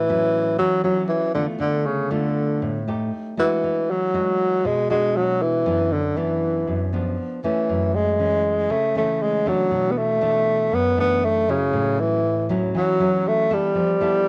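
A breathy, mellow tenor saxophone carries a romantic, sunny bossa nova melody at 118 BPM in A major, up front with light vibrato, subtone and scooped notes in a jazz solo style, while a fingerpicked nylon-string guitar with audible finger squeak and a deep classical tone accompanies through chords from A6 to a closing Fmaj9#11, both parts tinted by cassette tape in a small room on this 14.3-second fragment of a longer home recording.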